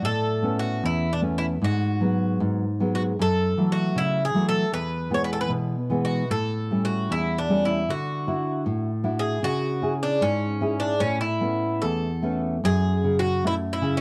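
A bright, metallic Irish bouzouki carries the melody over a dark, fingerpicked classical nylon-string guitar, both up front and playing together from the opening moment in this passionate, longing fado-style ballad in A major, drawn from a longer piece. The pair moves with a rubato feel around 77 BPM in 2/4, the double-strung bouzouki's picked lines ringing above the guitar's deeper accompaniment as the harmony drifts through a chain of chords and shifts to F#m at 12.6 seconds. The sound is dry and close, like a 1970s studio recording, with light reverb and a small room ambience.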